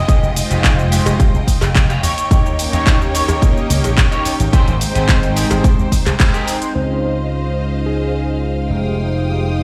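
Sensual and cosmic, this nu-disco excerpt runs at 108 BPM in a straight 4/4 over chords opening on Fm9, driven by a bright, punchy slap bass through an envelope filter and an up-front electronic kick alongside a tape-tinged house kit of handclaps, hi-hat and shaker, with a dry cowbell in the background. A slightly broken-up electric guitar picks a riff with chorus and dub echo until 6.6 s, while a smooth, detuned sawtooth pad and a lush, biting string section, pumping against the sidechain, hold sustained chords. After a band accent at 6.2 s, a thick, wave-folded unison lead enters in the background at 6.8 s with delay as a filter sweep moves across the pad, the mix set in a large studio reverb.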